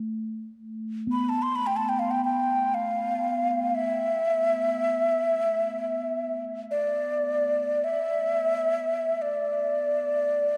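World meditative music in free time, haunting and meditative, cut from a longer piece. A soft bronze singing bowl rings low from the very start, its metallic tone slowly beating beneath a felt mallet, while from 1.1 seconds a breathy bamboo xiao carries the melody up front with vibrato and tongued notes, trailed by delay. A cathedral reverb with a long five-second tail bathes the dark, warm production.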